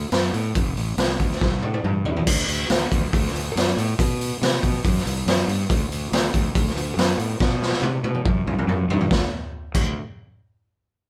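A straight 4/4 groove at 141 BPM drives this swaggering blues rock power trio and southern rock excerpt in D mixolydian, where a growly, overdriven fuzz fingered electric bass with a bright edge sits up front beside a saturated, gritty garage drum kit of kick, snare, toms, hi-hat and crash, heard with a punchy kick, a medium-tuned snare and a rolled-off top, the band playing live in one room with light reverb and drum fills landing at 1.4 and 7.4 seconds.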